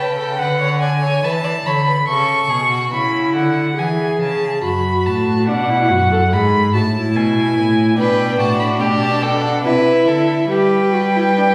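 A lively, joyful baroque-style fugue for string quartet opens at 71 BPM in 3/4, with a dark, woody first violin carrying the high melody over a focused cello bass and a smooth, close second violin, each bowed with vibrato. At 2.9 seconds the second violin drops out as an expressive viola enters with sliding portamento accompaniment, and the second violin returns at 8.0 seconds as the harmony settles into G major. A reverberant recital-hall ambience surrounds this short section cut from a longer piece.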